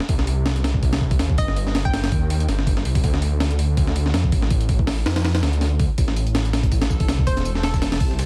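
A gritty, pitched-up breakbeat kit opens this drum and bass and jungle fragment, its thumpy kick, high-tuned snare and hi-hat sitting up front with a compressed, tape-warm punch and a touch of studio ambience. A thick, menacing detuned saw bass arrives almost at once, beating and sustained, with tube saturation giving it a mellow weight beneath the swung groove. A hollow, bouncy square pluck appears in brief bursts, first at 1.4 seconds and again near the end, bright and detuned with chorus, cassette tape colour and dub echo trailing behind it. From 6.0 seconds a second, natural-pitched breakbeat kit of hi-hat, snare and tambourine joins in the background, thinned by high-pass filtering. A reversed, dreamy swelling texture with granular shimmer and its own reverb drifts in softly underneath, while the dense, heavily limited master and vinyl crackle leave the whole feeling nostalgic and raw.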